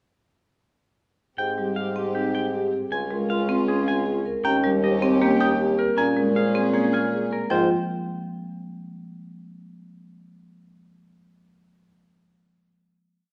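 Bright and propulsive, this short minimalist classical piece layers repeated short cells on clean, picked semi-hollow electric guitar, up-front hard-mallet marimba, ringing background vibraphone and, from 4.4 s, airy soft-mallet xylophone over a distant clarinet's pulsing notes, dark sul tasto chamber strings in swelling held chords and long, mellow bassoon bass notes, heard through a recital hall reverb and worn, warbling cassette tape before a final chord at 7.5 s.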